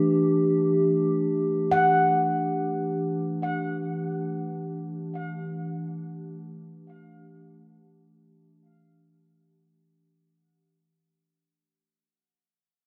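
A warbling, dark tape-like pad holds a sustained Em11 chord in E minor throughout this lo-fi ambient fragment, its chorus and built-in reverb giving a nostalgic, melancholic haze in free time. Between 1.7 and 2.9 seconds a ringing, bright handpan plays brief arpeggios around F#5, trailed by tape echo. A wet echo-chamber reverb and echo-heavy mix give the whole a spacious feel as the sound fades out across its 10.9 seconds.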